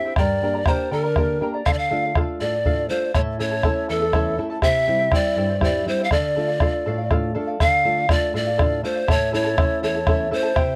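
Andean folk in D minor at 81 BPM in 6/8, festive yet melancholic, with a breathy bamboo pan flute carrying the tongued, vibrato-laden melody up front over shimmering fingerpicked double strings of charango, a thumb-plucked classical nylon-string guitar that adds a brief fill at 6.9 seconds, and a round, saturated bombo sitting up front, all set in a dry, intimate 1970s-style studio sound with light reverb, as chords move through Gm, Dm, A and C.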